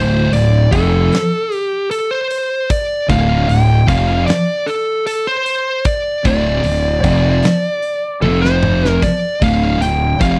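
A dark, compressed fuzz lead guitar with slapback echo carries the melody up front over two thick fuzz guitars playing a low riff in the background and a growly, tube-saturated fingered bass, before a big rock drum kit with a fat snare and punchy kick enters at 0.3 seconds, driving this ominous, brooding stoner and doom metal passage at 76 BPM in D minor from Dm to F5 and back, with a drum fill at 8.2 seconds, all captured in a dry, close 1970s-style studio sound in a short excerpt cut from a longer piece.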